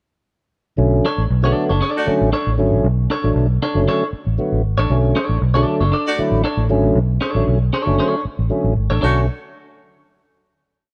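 A fat tonewheel organ with a slow rotary speaker opens at 0.8 s with syncopated, rootless chord stabs over a round, foam-muted fingered bass riff anchored on the downbeat and dotted with ghost notes, while a bright, twangy clean guitar adds clipped, compressed chords in this cool, sly funk groove in B minor at 116 BPM. A dark, distant horn section flickers in briefly, then returns at 6.1 s with punchy, octave-doubled short stabs carrying a light vibrato. The piece settles onto a final chord at 9.0 s, framed by light reverb and a dark, warm production.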